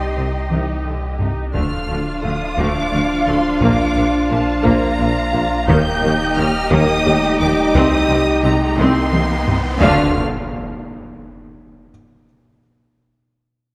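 Bathed in a wet concert-hall reverb, this brooding, relentless hybrid orchestral and electronic film cue in 6/8 sets two lush violin lines, a focused melody up high and a more distant second line, over clear violas, mellow French horn chords and a very quiet felt-muted upright piano whose audible action noise adds intimacy. Beneath them, a deep, round dub sub bass joins tuba, cellos and double basses in the low register, while a taiko ensemble played with hard sticks sits in the background. Taiko fills mark the opening and the later stretch, and an electronic riser from 7.7 s leads to an impact at 9.8 s as the harmony returns to D minor.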